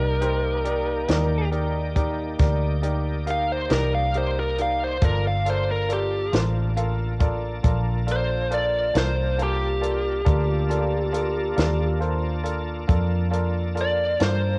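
Mournful and brooding, this slow blues in 12/8 is carried by a biting, overdriven lead guitar soloing up front over a bright, brilliant grand piano and a shouting tonewheel organ colored by slow rotary speaker, chorus vibrato and key click. A dark, foam-muted electric bass sits round and forward, while a dry cocktail drum kit with a high-tuned snare and punchy kick enters at 0.2 seconds, as the harmony moves from Cm7 to Gm7 at 5.0 seconds. The small room and light reverb of a home cassette recording, with tape coloring the piano, organ and drums, give this fragment of a longer piece an intimate, worn feel.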